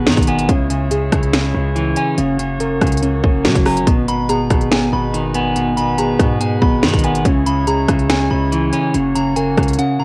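A home cassette recording with light digital ambience carries a cold, dark drill piece at 142 BPM in a half-time feel in G# minor, where up-front, tape-warmed electronic drums with a hard-clipped kick, sharp snare, crisp hats, rim clicks and finger snaps ride over a punchy, heavy 808-style bass, while a clean, picked electric guitar and soft, intimate felt-like synth keys playing chorused, filtered arpeggios with analog delay sound alongside a distant, nasal, stopped French horn section holding chords, and a delicate, tinkling FM tine bell with a vintage warble joins at 4.1 s.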